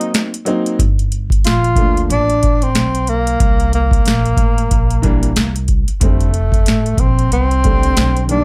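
A breathy tenor saxophone leads this mellow, smoky jazz-hop passage cut from a longer piece, its dark, whispered tone carrying vibrato and scooped notes, placed up front with slapback echo and plate reverb. Beneath it, a booming, overdriven analog drum machine with a deep kick, crisp snare and metallic hats sets a swung 92 BPM in G minor, while a warm, boxy upright piano with short sustain plays the accompaniment. After a short break, a bright pizzicato upright bass with a woody steel-string sound enters at 0.8 seconds as the chords move from Gm9 through C7(no3) to F6 in a mix carrying little room reverb.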